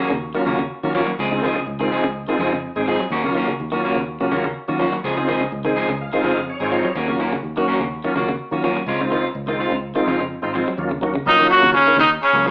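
A straight 4/4 afrobeat groove at 125 BPM drives this defiant excerpt in Eb dorian, with a round, foam-muted fingered bass under a bright, reedy tonewheel organ whose slow rotary speaker, light overdrive, chorus vibrato and key click sit up front, adding a fill from 5.5 to 7.0 seconds. Two slightly broken-up electric guitars share the groove, one playing stabs and the other arpeggios, as the chords move between Ebm7 and Dbmaj7. At 11.3 seconds a buzzy, forceful metal-muted trombone takes the melody up front, backed by gritty, raspy tenor and baritone saxophones on a second line, all heard through a live-room, AM radio sound with moderate studio reverb.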